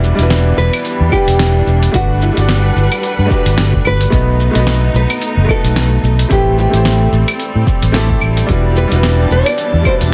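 A gently swung 110 BPM groove in 4/4 opens this relaxed sunset chillout passage in E minor, carried by a gritty, sampler-style drum kit with a fat snare, claves, hi-hat and shaker, joined at 1.1 seconds by a deep, layered electronic kick, while a round, punchy fingered electric bass sits up front. Above it, a small, boxy nylon-string guitar carries the fingerpicked melody with audible finger squeak and tape echo, a clear, vintage grand piano with short sustain and delay supplies the accompaniment, and a veiled, muted studio string section holds lush bowed chords with vibrato and a soft attack through a progression moving from Em7 through Gmaj7, B7 and Am9. At 9.0 seconds a faint, twinkling granular shimmer with its own reverb surfaces in the background, all set in light small-room ambience under a dense, heavily limited master.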